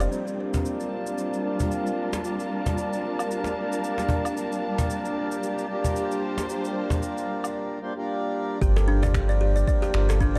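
A swung 4/4 groove at 113 BPM opens this organic downtempo excerpt in G minor, carried by a snappy, saturated cajon that sits up front from 0.5 seconds alongside a faint bed of electronic woodblock, cabasa and finger snaps. The mood is earthy and meditative, settling on a Gm7 chord as a reedy, breathing pedal harmonium plays accompaniment through sidechain pumping, tape echo and shimmer reverb, with a filter sweep running across it until 8.6 seconds. Alongside it, a dark symphonic string section holds lush, bowed chords with expressive vibrato, roughened by vintage 12-bit sampler grit and pumping until it stops at 7.6 seconds, while a very quiet quartz singing bowl rings with slow, pure beating over the same stretch. At 8.6 seconds the arrangement shifts: a buzzing kalimba plays bright, woody thumbnail-plucked arpeggios through echo and shimmer, a round sine sub bass holds a deep, pumping G, and a produced electronic kick adds weight. 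The production is dark and gently reverberant, with the harmonium's boxy small-room tone and the cajon both close to the listener.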